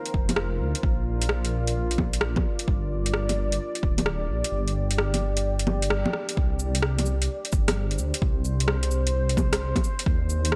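An overdriven, up-front electronic kick drives this rainy, melancholic future garage excerpt with a swung 16th-note feel, dropping out from 4.5 to 6.4 seconds, while a rumbling, detuned sawtooth bass with sidechain pumping plays alongside a deep house kit of bongos, cabasa, rim click and metallic hi-hats, and a moody, slow-attack ambient pad carries chorus, built-in reverb and 12-bit sampler grit through the chords before a band accent at 5.9 seconds and a move to Csus2.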